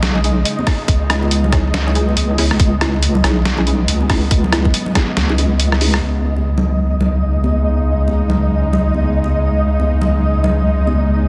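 An excerpt of meditative, cavernous deep dubstep in C# minor at 140 BPM with a swung half-time feel opens on a tense, string-like bowed drone holding sustained chords over an up-front, dark wobble bass with chorus, while a grainy, flickering texture with built-in reverb hangs high above. Muffled, pitched-down sampler-style drums with a soft-clipped snare carry the first 6.0 seconds alongside a tight, tape-tinged electronic kick, muted dub chord stabs run through phaser, cassette tape and dub echo, and bright, distant congas with dub echo sit in the background. After the drums stop at 6.0 seconds, the chord moves from C#madd9 to C#sus2 and the drone, bass, texture and congas carry on in a dense, heavily limited mix with light reverb.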